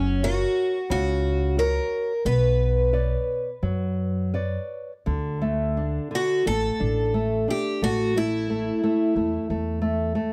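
A dry, close recording with a 1970s studio feel and a small room around the players opens this passionate, mournful fado-style ballad, cut from a longer piece and moving in a rubato 4/4 at roughly 81-92 BPM. A picked twelve-string acoustic guitar carries the melody with a bright, shimmering, octave-doubled parlour tone, finger squeak and all, while a fingerpicked nylon-string guitar gives warm classical accompaniment and a pizzicato upright bass adds a woody low end. The music starts in B harmonic minor over F# and Bmadd9 chords, then turns to D major at 5.1 seconds, and the melody guitar falls silent at 9.5 seconds just before the others stop.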